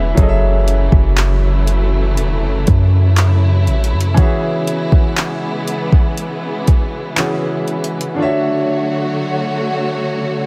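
Contemporary R&B at a slow 60 BPM in E major, tender and smooth, built on a clear, intimate concert grand piano with audible action noise that opens with a fill and carries the accompaniment through F#m7, E6 and Dmaj7 beneath lush, distant bowed strings whose sustained chords pump with sidechain and sing with vibrato and portamento. A deep, boomy 808-style bass with a fast attack and decaying sine tone sits up front until 4.2 s, while an overdriven, produced drum kit of soft kick, handclaps and hi-hat, re-recorded in a small room, plays from 0.2 s to 8.2 s in this fragment of a longer piece, all set in digital ambience.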